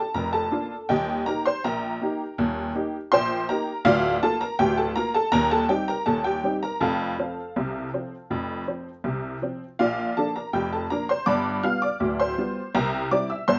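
A detuned, jangly honky-tonk upright piano plays alone for the full 13.6 seconds, sitting up front with a bright, vintage character, short sustain and a touch of light reverb, ranging from deep bass notes to high treble. This lively, jaunty ragtime passage moves at 81 BPM in a straight 2/4 feel in B-flat major. Cut from a longer piece, it travels from Bb through Eb, Cm and F before heading to G7 and C7 near the close.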